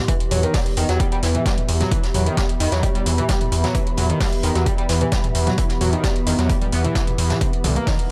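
Driving peak-time techno at 131 BPM in E harmonic minor, industrial and intense, where a punchy, up-front electronic kick and a gritty, saturated sawtooth bass with oscillator sync drive under a screaming, guitar-like overdriven synth lead soaked in tube saturation, lush chorus and tape echo, while a techno kit adds metallic hats and toms, a background brush kit lends a warm acoustic snare and hi-hat, and a deep, moody ambient drone and a warbling, nostalgic lo-fi tape pad pump with sidechain beneath, moving from Em to C5 at 7.4 seconds in this short cut from a longer piece.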